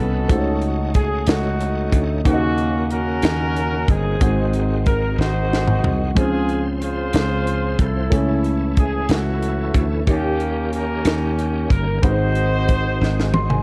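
Hopeful and jubilant, this slow gospel excerpt moves at 61 BPM in a straight 6/8, counted in dotted quarters. A vintage-toned horn section carries the melody with tight ensemble playing, vibrato and a slapback echo. Behind it, a grand piano with short sustain accompanies from the background, while a bright, shouting tonewheel organ holds sustained chords with key click, chorus vibrato and a slow rotary speaker. Up front, a thumbed slap bass sounds growly, foam-muted and direct, and a tight funk kit with a high-tuned snare and tight kick enters at 0.3 seconds, adding drum fills at 5.2 and 13.0 seconds, the latter joined by a piano fill. The chords move from Gbm6/Db through Ebm7, Ab7, Dbmaj7, Amaj7/C# and Eb7 back to Ab7, all within a dark production set in light small-room reverb.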